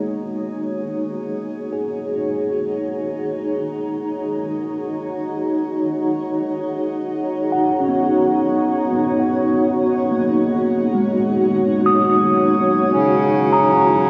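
A granular cloud pad and a mellow tine electric piano fade in together from the start of this spacious, reflective ambient passage in free time, cut from a longer piece. The pad sits up front, holding sustained chords with a cloudy, blurred, full-bodied timbre that slowly evolves, its granular texture wrapped in its own reverb and a shimmer reverb. Around it, the clean tine electric piano spins arpeggios through delay and shimmer reverb, sounding as if heard through built-in speakers. The harmony rests on G#m7 until 12.9 seconds, when it moves to F#7 and a hand-pumped harmonium enters up front with a reedy, breathing drone that carries to the end at 14.1 seconds. A lush hall reverb and the warbling pitch drift of worn cassette tape give the whole recording a worn, aged character.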